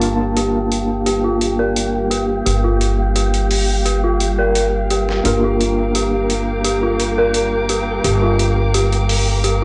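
Trip hop in G minor at 86 BPM, this melancholic, dark fragment of a longer piece moves from Gm7 to Bb/G at 5.3 seconds over a straight 4/4 pulse. A sampler-style drum kit, pitched down, compressed and gritty with a medium-tuned snare and hi-hat, sits in studio reverb, while a woody, thumpy pizzicato upright bass holds G1 up front. A worn, slightly out-of-tune tine electric piano plays accompaniment through its built-in speakers, lightly overdriven with tremolo and tape echo. A bowed violin section sustains expressive chords with vibrato and portamento, and an eerie, inharmonic FM synth bell plays chorused arpeggios between F4 and Bb4, both under filter sweeps and 12-bit sampler grit. From 0.8 seconds an airy, breathy wind-like texture hovers in the background, and the whole piece carries the dry, cassette-dulled sound of a small room.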